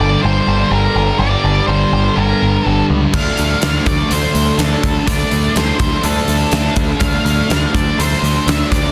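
Shoegaze-leaning dream pop rock at 124 BPM in D minor, this melancholic, hazy excerpt layers a warm octave-fuzz lead guitar melody over a bright, double-tracked fuzz guitar riff with subtle chorus and a growling, overdriven picked bass, moving from Gm to Dm7 as a huge arena drum kit with a fat snare, punchy kick and bright cymbals crashes in at 3.1 seconds, all under studio reverb and a dense, heavily limited modern master.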